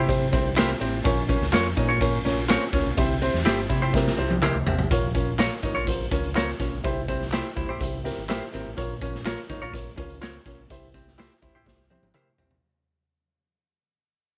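A raw garage drum kit drives this joyful, uplifting slice of uptempo 1960s-style soul, its boomy kick and medium-tuned snare sitting up front with a gritty, saturated edge, a rolled-off top and the pumping ambience of a bright stone room, with fills at 3.9 and 11.7 seconds. At 124 BPM in a straight 4/4, a semi-hollow electric guitar punches out clean stabs through a lush chorus, while a boxy grand piano comps up front. Underneath, a deep dub fingered electric bass holds a dark, round low end. A vintage hollow-body jazz guitar picks a dim riff in the background, and tambourine, maracas and group handclaps add a live-room shimmer further back. The harmony moves between C and Bbm, the piece shifts into a new section at 4.9 seconds and fades out from there, and the whole passage sits in studio reverb as a cut from a longer track.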